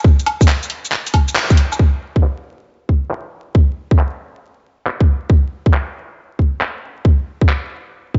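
A tight, layered electronic kick drum opens this rainy, melancholic future garage fragment, and at 0.2 seconds a swung garage kit of handclaps, bright hi-hats, shaker and woodblock joins it up front, its percussion low-pass filtered amid vinyl crackle and light reverb, with a band accent at 1.4 seconds and a filter sweep on the drums from 1.8 seconds as the second section begins.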